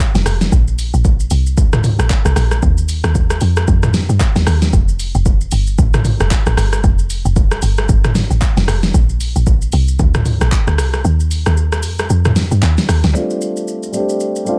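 Amapiano in F mixolydian at 114 BPM, this relaxed fragment of a longer piece rides a swung sixteenth-note feel in 4/4. A layered, electronic deep house kit of kick, snare, handclaps, hi-hat, shaker, rim click and toms sits up front, its deep kick and fat snare carrying a tape-warm tint from being re-recorded in a small room. Beside it, a woody, punchy log drum bass with a fast attack and a mellow decay works between F1 and G2, its FM tone edged by a noise layer. The drop runs from the opening through 13.2 seconds over chords moving from Bbadd9 to Ebsus2 and Fadd9, with the kick muted from 11.0 seconds. At 13.1 seconds a clear, intimate concert grand piano enters with deep bass and audible action noise, playing between G3 and G4 under a low-pass filter sweep as the harmony lands on F69. A digital ambience surrounds the whole recording.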